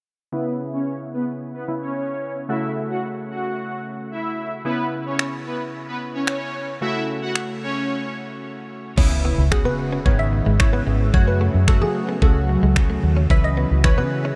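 A smooth, detuned supersaw carries the melody up front from the start, its soft-attack sawtooth lines sustained and coloured by phaser, tape echo, a low-pass filter and sidechain pumping. This is a bittersweet, driving dance-pop piece in C# minor at 111 BPM in a straight 4/4, cut from a longer track. Glossy, chorused retro synth keys with a bright, detuned pulse-wave edge play the accompaniment throughout, pumping beneath a filter sweep that runs until 9.0 seconds, with a short break arriving at 8.4 seconds. A layered electronic pop kit arrives at 5.2 seconds with a knocking kick, finger snaps and crash cymbal. At 9.0 seconds the second section opens with a very quiet impact, a round, punchy, foam-muted fingered bass up front, and a clean, direct-recorded electric guitar riff tucked in the background under subtle chorus. A crystalline wavetable pluck then adds a second melody with chorus and tape echo. 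Meanwhile a very quiet, ethereal pad shimmers with octave-up sparkle over chords moving between C#m7 and F#m, all set in light digital reverb.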